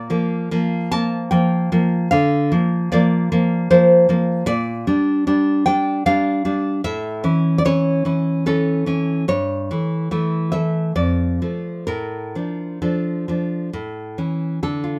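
In a rubato 3/4 lilt drifting between 63 and 78 BPM, this passionate, melancholic romantic piece for solo fingerpicked nylon-string guitar sits up front with a full-bodied, deep classical tone in moderate studio reverb, tuned to A4 = 437 Hz, as it moves from Bb through Gm/Bb and A7/G toward Dm/F and settles on A at 13.7 seconds in this short section cut from a longer work.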